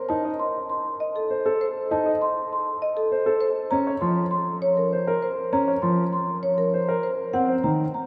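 Classical minimalist pattern music in a straight 6/4, this brief excerpt feels meditative yet urgent, with a woody, rosewood-barred marimba carrying the melody up front while a boxy, intimate grand piano, its action noise audible, supplies accompaniment beneath. A dark, mellow baby grand adds smooth arpeggios with long sustain, all three parts sounding together from about 0.1 s to 8 s. The harmony moves from Adim/Eb to Bbm at 3.7 s and Ebm at 7.3 s, bathed in a wet cathedral reverb that places the ensemble in a vast, echoing space.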